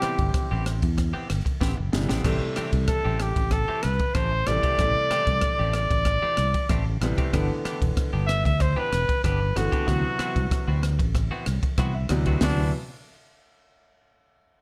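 A forceful, up-front trumpet carries the soaring melody, with light vibrato, scooped notes and a touch of plate reverb. It plays in this electric jazz fusion excerpt at 94 BPM in D mixolydian, its vintage jazz-style tone riding over chords that move from Am9 through D9sus4/A and G6 to D13. A brilliant, open grand piano accompanies underneath, and a clean, compressed semi-hollow guitar adds picked stabs with subtle chorus. A fretless bass holds the low end with a direct, amped sound, while a polished, airy fusion kit with a high-tuned snare, punchy kick and dark cymbals plays a fill at 1.6 seconds. The piano takes its own fill at 11.5 seconds just before a new section begins at 12.4 seconds, framed by a dark production with light reverb.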